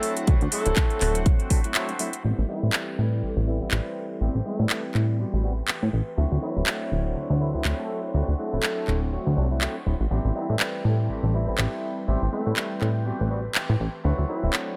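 Sensual and groovy, this filtered disco house excerpt in A dorian moves at 122 BPM with a lightly swung 16th feel, as a mellow, vibrato-tinged horn section carries the jazz-style melody with octave doubling and a vintage 12-bit sampler grit. A barky, lightly overdriven tine electric piano through a combo amp, a twangy clean guitar riff in the background and a very quiet, swirling string machine on sustained chords fill out the D7 and Am7 harmony, while a plucky, funky analog bass with tube saturation sits up front. A punchy, tape-warm electronic kick appears only from 0.3 to 1.6 s, beside a house kit of handclaps and metallic hats; after a short break at 1.8 s, a filter sweep runs from 2.2 s onward, with sidechain pumping on the horns, piano, guitar, bass and hats, all in light reverb.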